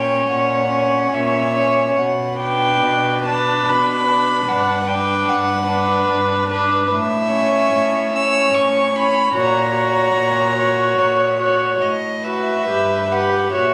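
The pulse moves in a flexible three, with uneven beats and a rubato feel that lets each bar breathe in this slow, elegiac romantic movement for string quartet, cut from a longer piece. The first violin carries the melody high above the group, its tone pure and floating, placed up front with an airy bow and soft attack. Beneath it a second violin holds a close, intimate second line with light vibrato, while the viola fills in a warm, sul tasto accompaniment in the middle register. The cello sits lower in the mix, a clear, somewhat nasal bass line. The melancholic harmony moves from F#/A# to Bm, through Gmaj7 and A, and back to F#/A# before turning to B7/A at 11.8 seconds and Em/G at 12.7 seconds. Heard through a phone in a recital hall, the sound carries a moderate room reverb plus a club-style reverb and compression.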